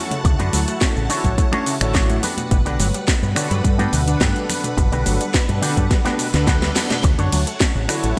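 A punchy, layered electronic kick and a house kit with cracking snare, metallic hats, snaps, ride and shaker drive this sunny, feel-good nu-disco excerpt in straight 4/4, with high-tuned hand-struck congas ringing in the background and a drum fill at 5.9 seconds leading to a very quiet reverse cymbal at 6.6 seconds. A fingered electric bass with an envelope filter anchors the low end, while a dark, clean, compressed guitar with its own envelope filter plays a riff. Round, detuned synth brass with chorus, delay and sidechain pumping carries the accompaniment, a lush vintage string machine holds sustained chords, and a bright wave-folded unison pluck arpeggiates with a cassette-tape tint, all moving from Dmaj7 to Gmaj7 and back within a glossy 1980s-style digital sheen.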